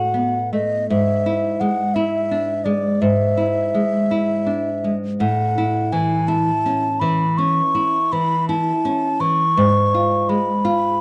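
The sound is dry and close, like a 1970s studio recording with little reverb, so both players sit up front and near the listener. This short passage from a longer romantic duo for baroque flute and classical guitar moves at a slow 55 beats per minute in 12/8, played with a free rubato feel in A major, tuned slightly low at A4 = 436 Hz. The baroque flute carries the melody in its upper range with a woody, airy, straight tone and a crisp attack. Beneath it, the nylon-string guitar is fingerpicked in a classical style, its old strings giving a warm, woody acoustic color. The harmony drifts from B7 over A to E7 over G#, settles on A major around 5.2 seconds, then turns to a G#m6 near 9.6 seconds. The mood is serene and gently warm throughout.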